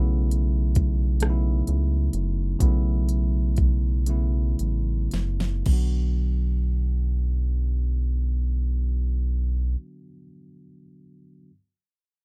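A bell-like, clean electric piano and a rubbery, hollow square-wave bass open this sultry, late-night slow six-eight R&B fragment in B minor at 36-45 BPM on a B9sus4 chord, joined by an up-front electronic drum kit with a soft kick, fat snare, smooth hats, rim clicks and a crash whose fill from 4.1 s closes a passage that slows down before the harmony settles on Bm at 5.7 s, after which the drums fall away, the dark, bouncy bass stops at 9.8 s and the electric piano rings on alone in a dry, rough home-demo mix.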